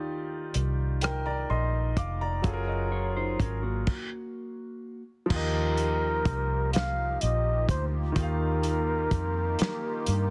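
A dense, heavily limited studio sound with reverb frames this tender, sensual slow six-eight R&B excerpt in Eb major at 42 BPM: a clear baby grand piano with audible action noise and a round, foam-muted vintage electric bass play from the start, joined by a muffled, lo-fi soul drum kit with dark cymbals, while a mellow electric guitar adds a second line from 2.7 seconds before a stop at 3.9 seconds, and from 5.3 seconds a breathy, whispered flugelhorn carries the melody over a lush, detuned sawtooth unison pad with chorus as the harmony moves from Ebmaj9 through Gbmaj9 to Ebadd9.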